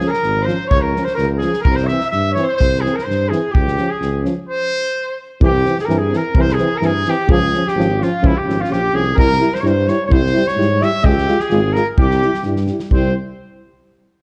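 Swung sixteenths drive a brisk 2/4 at 128 BPM in this bittersweet, fiery Balkan brass band excerpt in C phrygian dominant, with its harmony rocking between Db and C and a stop from 4.5 to 5.4 seconds before the phrase repeats. A clear, up-front trumpet carries the melody with light vibrato, joined by a roomy alto saxophone on a second line, while a mellow euphonium and a softer, background euphonium fill the accompaniment above a smooth-topped tuba bass. An acoustic drum kit with a punchy kick and medium-tuned snare and a rolled-off top keeps time, and the dark production adds a light reverb.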